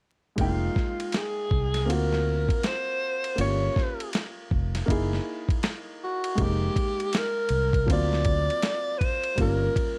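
A lazy swung sixteenth-note groove in four drives this nocturnal, mellow jazz-hop fragment, cut from a longer piece, with a dusty, sampler-style soul drum kit up front: a thumpy kick, a medium-tuned snare, hi-hat and ride cymbal, all compressed and gritty. A round, punchy fretless electric bass sits just as close, dark and direct, holding the low end until it drops out at 9.7 s. Over this, a breathy alto saxophone takes the solo melody in a jazz style, close-miked and mellow with subtone and vibrato, bathed in plate reverb. A dark, woody, somewhat boxy upright piano supplies a mellow accompaniment further back, also carrying a plate reverb. The harmony moves through Fm11, D7alt, Gm7b5 and Gb13 before the progression starts again at 6.4 s, while vinyl crackle and a light reverb give the whole mix a worn, late-night haze.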